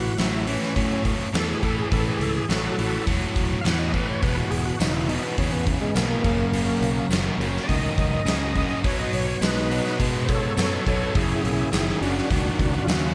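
A gritty, overdriven tonewheel organ solo played through a slow rotary speaker with chorus vibrato and slapback echo opens this driving, confident classic rock excerpt at 104 BPM, over a bright distorted guitar riff, a second overdriven guitar riffing in the background, a round fingered bass and a huge arena drum kit with a fat snare and punchy kick up front; a very quiet organ with key click holding sustained chords joins at 4.2 seconds and a jingly tambourine at 4.8 seconds, in a big arena sound with recital hall reverb as the chords move from A through E, F#, B and back to F#.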